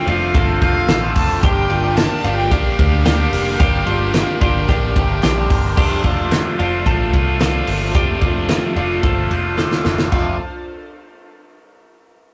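This rough rehearsal-room recording, tinged with tube saturation and a small room's short reverb, captures a bright, breezy stretch of jangly indie pop in F major at 110 BPM, cut from a longer piece. A loose, up-front drum kit with a fat snare and dark cymbals plays alongside a round, foam-muted picked bass, while a twangy twelve-string electric guitar rings out arpeggios over a biting overdriven guitar treated with phaser and a lush, detuned unison pad with chorus sitting in the background, and a very quiet group handclap adds crisp accents. A smooth, close violin carries the melody until 5.2 seconds as the harmony moves from F6 to Gm7, returning to F6 at 5.8 seconds, with a drum fill at 9.6 seconds.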